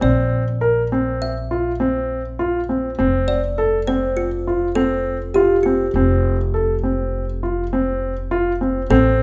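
A bright, ringing kalimba carries the melody from the first moment, its thumbnail plucks landing close and dry with a hollow, woody box tone that sounds full despite the small instrument. Beneath it, a grand piano plays arpeggios with an intimate, natural character, the soft clatter of its action audible up front. An upright bass anchors the low end with thumpy, gut-string pizzicato, placed just as near to the listener. This short excerpt of contemporary chamber music moves in an uneven 5/4 with a straight feel, giving it a shimmering yet restless mood. The harmony rests on a Bbadd9 chord before shifting to F5 at 3.0 seconds, and all three instruments play throughout the 9.2 seconds within a moderate recital hall reverb.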